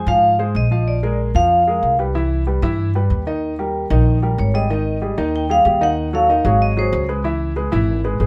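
This short Afro-Cuban jazz passage opens with vibraphone and concert grand piano sounding together, the upright bass joining almost at once at 0.1 seconds. The mood is lively and sophisticated, moving at a brisk 188 BPM in a straight 4/4, cut from a longer piece. The vibraphone carries the melody between C5 and G5 with medium hard mallets, its metallic, ringing tone shaded by a medium motor vibrato and a vintage, band-limited quality; it drops out after 2.0 seconds and returns from 4.4 to 7.1 seconds. The piano accompanies throughout, intimate and up front, with deep bass, a natural sound and audible action noise, while the pizzicato upright bass on steel strings gives a woody, dark foundation from G1 to Ab2. The harmony moves through Fm7, Bb9, Cmaj7 and Eb before a second section at 4.7 seconds shifts to Ab5, Ebdim, Ab7 and Dbm7, all set in light reverb.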